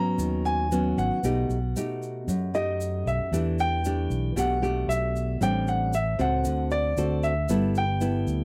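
Bossa nova at 115 BPM, melancholic and intimate: an up-front concert grand piano with short sustain carries the high melody over fingerpicked classical nylon-string guitar, while a round, dark fingered electric bass and a grainy, bright tube shaker join at 0.2 seconds, the harmony settling into E minor from 3.3 seconds in a dry, close 1970s-style studio sound with light reverb, heard as a fragment of a longer piece.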